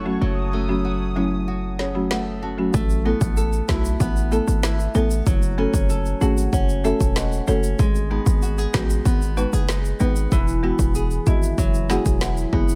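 Bouncy and sultry, this dancehall cut from a longer piece moves at 95 BPM in F# dorian, opening on a lush, detuned pad with chorus and sidechain pumping that drops out at 2.7 s, beneath fingerpicked flamenco guitar arpeggios with audible finger squeak and a punchy, up-front 808-style bass. A woody, mellow marimba with soft mallets, also pumping, accompanies throughout and adds fills, while an overdriven electronic afro-pop kit with a deep kick, woody snare and rim click arrives at 1.8 s. A bright, close tube shaker joins at 2.7 s as the chords move from F#m through Asus2 and G#m to Eadd9, all set in a small room ambience.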